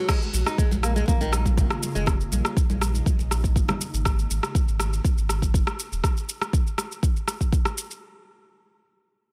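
A straight afro house groove drives this spiritual fragment, with a deep, up-front electronic kick under a layered, tape-tinged deep house kit of crash, rim click and shaker, while hard-hand congas sit back in a small room until about 3.9 seconds. A bright, fingerpicked flamenco guitar plays arpeggios with delay and sidechain pumping until 2.1 seconds, over an ethereal, airy, detuned pad that holds sustained chords through chorus, phaser and reverb in the background. A round, sine-like sub bass, also pumping, carries the harmony from A#m7 toward G#5 before dropping out at 6.0 seconds, all in a fairly dry mix.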